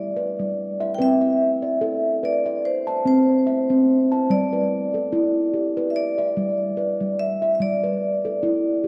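At an unhurried 73 BPM in 4/4, the pulse carries a light 56% swing on the sixteenths, giving this gentle, dreamy piece of meditative world music a softly lilting sway. A steel tongue drum struck with soft rubber mallets spins arpeggios from G3 up to A5, its tone round, pure and mellow, sitting mid-forward and up front. Alongside it, a vibraphone played with medium hard mallets carries the melody between C5 and G5, metallic and smooth with a medium motor vibrato, a touch lower in level than the drum. Both instruments sound throughout this 8.9-second cut from a longer piece, each trailed by a diffuse ambient delay, while the harmony in G major moves from G to C at 1.0 seconds and back to G at 4.3 seconds. A wet echo chamber reverb with a 2.2-second decay envelops the dark, warm production, and the tuning sits at A4 = 439 Hz.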